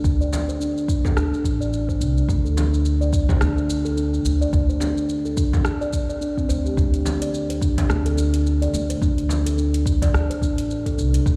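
A woody, dark pizzicato upright bass, pumping against a deep electronic kick, opens this mystical, meditative stretch of organic downtempo alongside a produced afro-pop kit of metallic hi-hats, rim clicks and shaker with a gentle swung sixteenth-note lilt. From 0.2 seconds a round, pure steel tongue drum played with soft rubber mallets rings out arpeggios up front, its tone shaped by a filter sweep and delay, while a large, band-limited vintage frame drum adds deep acoustic pulses from 0.3 seconds. The sound carries light small-room ambience and a large studio reverb, as if played through a big sound system in a bare room, in a fragment cut from a longer piece.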